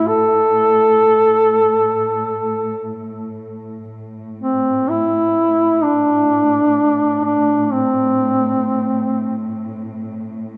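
Longing and mournful, this excerpt of a Caucasian folk lament unfolds in free time in A minor. A mellow duduk carries the melody up front between C4 and A4, its folk-style line marked by vibrato and scooped notes, with a distant, roomy character. Beneath it, a bowed studio cello section holds a dark, woody drone on A2 at a much lower level, its smooth top and vibrato giving the ensemble a soft glow. A wet cathedral reverb with a 4.2-second decay surrounds the sound, so the phrases hang in a vast, resonant space. The piece shifts into a new section at 3.9 seconds, and after the duduk stops at 9.6 seconds the cello drone sustains alone until 10.6 seconds.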